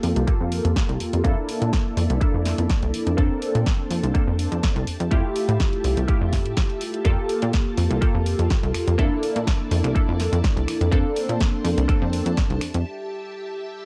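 Filtered disco house at 124 BPM in 4/4, with a 54% swing on the sixteenths. This short, funky and sunny cut sits in F major, tuned to A4 = 439 Hz. A punchy electronic kick sits up front, and a house kit with finger snaps, a punchy snare and bright hi-hats joins it to drive the groove, both carrying a cassette-tape character. A plucky analog bass with a sawtooth and square-wave bite and a fast, decaying filter pluck sits beside a detuned, wave-folded polysynth comp that adds ring modulation, chorus and phaser. Behind them, a lush, vintage string machine holds mellow sustained chords with a slow attack and ensemble chorus. The bass, the polysynth and the strings pump against the sidechain under a low-pass filter and a sweep that runs through the whole cut, over a cycle of Gm9, rootless C13, Bbmaj9/F and Fmaj9. The rhythm parts drop out near 12.8 seconds, so the strings ring alone in a break until 13.9 seconds, all with light reverb and the hazy feel of a home cassette recording.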